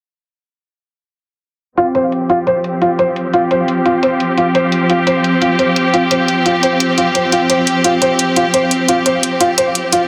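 Dark technical drum and bass at 173 BPM, tense and dark, cut from a longer piece: from 1.8 seconds a bright, intense studio string section holds sustained F5 chords with vibrato under a filter sweep, a soft, felt-muted upright piano plays intimate arpeggios through its own sweeping filter and tape echo, and an overdriven, layered electronic hi-hat adds a gritty small-room edge, all set in a moderate plate reverb within a dense, heavily limited modern master.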